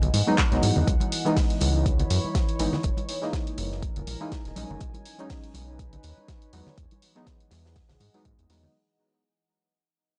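Deep house at 122 BPM with a swung 16th feel, moody and hypnotic, moving through Emaj9, C#m9, F#13 and B69 in this fading excerpt cut from a longer piece. An overdriven, up-front electronic kick enters at 0.4 seconds beside a round, detuned analog bass that pumps to the sidechain, while soft, vintage chord stabs carry chorus and analog delay, and a warbly, nostalgic tape-like pad with slow attack and built-in reverb glows behind them. A punchy analog drum machine supplies handclaps and hi-hat, bright congas sit in the background, and a dry reggae kit with a high-tuned snare adds hi-hat and snare, all within a gritty, cassette-saturated hardware sound.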